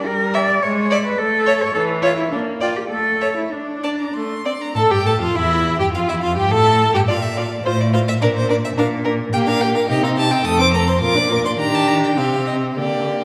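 In a flexible, rubato 2/4 at roughly 96-108 BPM, this quick classical-period string quartet movement, cut from a longer piece, feels restless and dramatic. A rich, smooth first violin carries the melody up to Eb6, while the second violin adds an expressive line with portamento, the even viola fills the accompaniment, and a warm, up-front cello anchors the bass with its own sliding, vibrato-laden phrases. The music shifts into a new section at 4.8 s, moving from tense diminished and dominant harmonies toward Bb and Ebmaj7, all bathed in a wet, church-like hall reverb.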